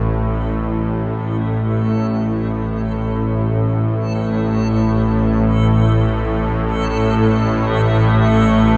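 Drenched in a cathedral-like reverb with a 5.2-second tail, this short dark ambient drone excerpt, cut from a longer piece, unfolds in free time with an ominous, vast mood and tuning set to A4 = 441 Hz. From the very start, a bowed-like drone sits up front in the low register, its string-like, nasal sawtooth tone bright and tense, thickened by unison voices, a noise layer and vibrato. At 0.3 seconds a reversed, swelling texture fades in, its detuned triangle tones broken into dreamy granular grains. At 3.0 seconds a very quiet, deep pad enters with sustained chords, its detuned sawtooth voices, sine sub octave and chorus giving a moody, warbling, vintage colour. All three parts carry built-in reverb and long releases, so they hang together as one dense, shadowy mass until the end.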